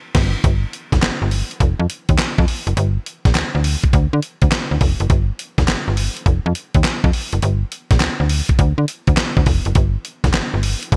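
The production is bright and glossy in a 1980s digital style, with a fairly dry overall sound and both parts pushed up front. This short cut from a longer new jack swing track sits in minor and carries a confident, slick R&B mood over a swung sixteenth-note feel in 4/4. It opens with a quick band accent before the main section settles in at 0.4 seconds and runs to the end. A sampler-style soul drum kit sounds gritty and compressed, with a thumpy kick, fat snare, handclaps, hi-hat and crash cymbal, all treated with gated reverb. Beneath it, a slap-like FM bass with a snappy, metallic, fast attack that then decays moves through a low register, adding a hard digital edge to the groove.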